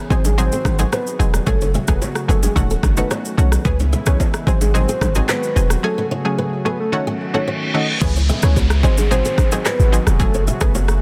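Sultry and smooth, this short afrobeats excerpt moves at 110 BPM in a straight 4/4 over a chord loop that circles from G#7 through F#madd9, D#m7b5 and C#m7. A hard-hitting 808-style bass sits up front with a punchy, heavy sine tone and a noise layer, decaying after each fast attack, while the electronic afro-pop kit pairs a deep kick with handclaps, rim clicks, shaker and crash cymbal. A soft octave-layered synth lead carries the melody in a dark, round voice with a sub octave, vibrato, phaser and delay, supported by a bright, detuned sawtooth analog pluck with short filtered decays and chorus. In the background, a smooth analog pad holds sustained chords with a slow attack, a fingerpicked flamenco guitar with fresh strings plays a riff, and very quiet, band-limited vintage bongos and congas add texture. A break opens at 5.8 seconds, and a reverse cymbal and downlifter enter at 7.2 seconds to lead into a new section at 8.0 seconds, all under light reverb and a dense, heavily limited modern master.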